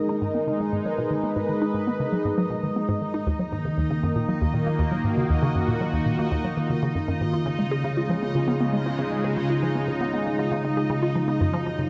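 A sweeping, resonant pad opens this hypnotic, cosmic ambient piece, its detuned sawtooth body and sub octave holding sustained chords up front with a chorused, evolving shimmer. Alongside it from the start, a hollow square-wave pluck plays a bouncy riff with a fast attack and short decay, colored by chorus, phaser and delay. A quieter bubbling texture sits higher up, its detuned sawtooth tone stepping through random filter changes with a soft attack, chorus and its own built-in reverb. A filter sweep runs across the synth arpeggio sound through the whole passage, at a steady 118 BPM in straight 4/4. The harmony moves from G#madd9 to D#m7 at 3.3 seconds and C#7 at 7.3 seconds, all set in a dark production with a long, wet plate reverb, in a passage cut from a longer piece.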